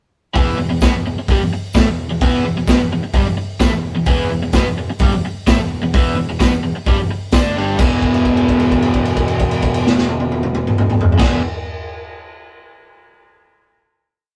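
A straight 4/4 garage stomp at 129 BPM drives this rowdy, raw garage rock piece, with a punchy kick, medium-tuned snare, toms and dark cymbals from a saturated, up-front drum kit in a pumping small room, while a bright, double-tracked overdriven guitar hammers out an octave riff and a fuzz-soaked bass sits in the background with a driving eighth-note line that doubles it. A jingly tambourine adds a very quiet pattern from 0.8 to 8.0 seconds. After the riff section, the band lands on a final chord at 7.8 seconds that rings out as a held note, all captured with light reverb in a rough rehearsal-room sound.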